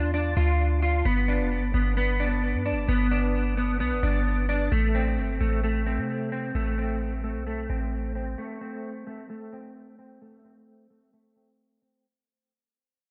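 A half-time 4/4 pulse at 131 BPM drives this eerie, brooding trap hip hop fragment in A minor, where a dark, clean, fingered electric guitar plays up-front arpeggios through ensemble chorus, delay and a low-pass filter over Dm and G before settling on Am, while a deep, boomy 808-style bass built from a sine with a noise layer and a fast, decaying attack sits forward in the mix until 8.4 seconds, and from 4.7 seconds a filter sweep on the guitar accompanies a fade-out in a shadowy, warm production with light reverb.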